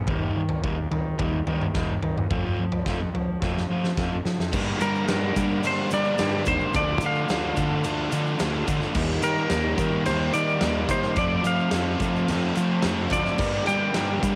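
Restless and cool, this indie rock excerpt opens with a growly fuzz bass, driven by overdrive, alongside an overdriven semi-hollow guitar riff with a hollow-body tone that sits in the background. A big rock drum kit stands up front in a large natural room, with a punchy kick, fat snare, bright cymbals, and a fill from 3.4 seconds that leads into the second section. At 4.5 seconds a crunchy overdriven guitar joins with its own riff, colored by analog chorus, while a grainy tube shaker adds close, dry texture far back in the mix. From 4.8 seconds a twangy, compressed twelve-string electric guitar carries the melody with a vibrato effect, joined by a very quiet glockenspiel struck with hard plastic mallets that adds a sparkling, bell-like second line up high. Both overdriven guitars, the drums and the twelve-string pass through cassette tape, and the whole track is a home recording on cassette with light studio reverb.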